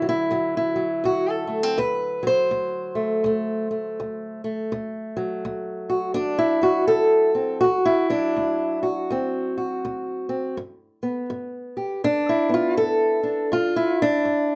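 Acoustic country blues with a laid-back, swaggering swing, carried by a single fingerpicked old ladder-braced acoustic guitar whose woody, boxy tone and aged strings sit up front in a dark production with a modest small-room reverb, holding on a D7 before moving to G at 10.6 seconds in this short cut from a longer piece.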